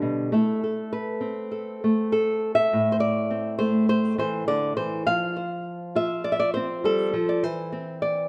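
Nostalgic and gentle, this short folk passage, cut from a longer piece, features a lone fingerpicked nylon-string guitar with a dark, small, up-front tone, spanning A2 to F5 in a straight 4/4 feel. The harmony moves from Am to F at 5.1 seconds and settles on C/E at 7.4 seconds, with finger squeaks audible on the strings. Light reverb gives the intimate sound a touch of space.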